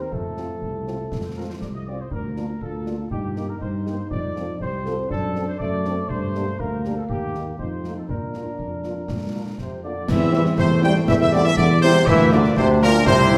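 A dark, close-miked tuba anchors this spirited, rousing military-style march for wind band, sitting forward in the mix beneath a warm trumpet section that carries the melody with light vibrato and a soft attack. Set at 120 BPM in a straight 2/4 in Bb major, the short excerpt from a longer piece also features a clear, vintage-toned euphonium playing a second line from the start. Concert bass drum, concert snare drum and clash cymbals with a dusky cymbal colour drive the march from 0.1 seconds, while a distant, roomy French horn section fills in accompaniment in the background. At 9.6 seconds an airy, very quiet large flute ensemble adds a bright, tongued second line, and from 10.1 seconds a very quiet trombone section holds sustained chords as the music moves into a new section. A wet scoring-stage reverb gives the band a broad, stately sense of space.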